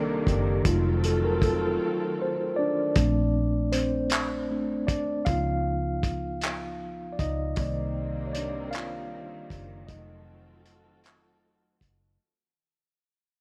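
Sensual and intimate, this slow six-eight R&B piece in Bb major moves at 52 BPM, with a mellow, clean tine electric piano carrying the solo up front over chords such as Cm9, F7b9, Bbmaj9 and Db9. Beneath it, a round, punchy foam-muted fingered bass plays alongside a cloth-damped, thuddy drum kit with tight kick, handclaps and hi-hat that sounds gritty, lo-fi and muffled, while a dark, lush bowed string section with vibrato holds sustained chords, dropping out at 2.9 seconds and returning at 7.6 seconds. Light reverb and small room ambience surround the parts, and a brief break leads into a fade-out that begins at 3.0 seconds.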